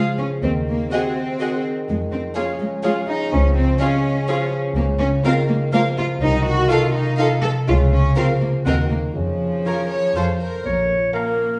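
In a straight-feeling 3/4 lilt, this mischievous, whimsical film cue sets a warm, sul tasto chamber violin section on the melody over a second violin line, clear clarinet and oboe, a dark, distant bassoon and a soft-edged viola section, a very quiet French horn section holding chords, ringing thumb-plucked harp arpeggios, and a rich, up-front cello section joined by a floating double bass section from 0.4 s, heard from further back in a stone room's reverb.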